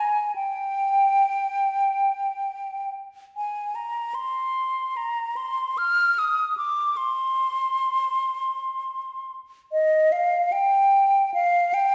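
A silver concert flute sounds from the first moment, alone, in a yearning, meditative classical passage in C minor that moves in free time. Its tone is mellow and hollow, with an airy, metallic edge, touched by vibrato and clearly tongued notes, and it sits up front as it ranges from Eb5 to F6. The instrument is tuned slightly high, with A4 at 441 Hz. A wet recital hall reverb with a 1.5-second decay surrounds the line, and the listener seems placed further back in the room. The solo flute carries the whole 11.9 seconds, a fragment cut from a longer piece.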